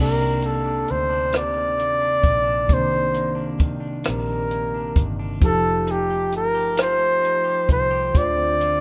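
A slow, straight six-eight groove at 44 BPM sets a sultry, late-night R&B mood in C dorian, with a compact cocktail drum kit entering at 0.4 s on hi-hat, kick drum and rim click, its sound dry and up front with a punchy kick. Underneath, a vintage muted fingered electric bass sits dark and round, foam-muted and amped, holding the low register between F1 and D2. A mellow tine electric piano, clean and heard through its built-in speakers, spreads the accompaniment across the chords Cm9, F9 at 5.4 s and Dm7 at 8.1 s. An electric guitar at the edge of break-up plays a quieter second line, twangy and fingered with a slight grit. Out front, a warm flugelhorn carries the jazz-style solo melody between G4 and D5, with vibrato, scooped notes and a slapback echo. The whole piece is cut from a longer work and has the small-room ambience and rough feel of a home demo mix.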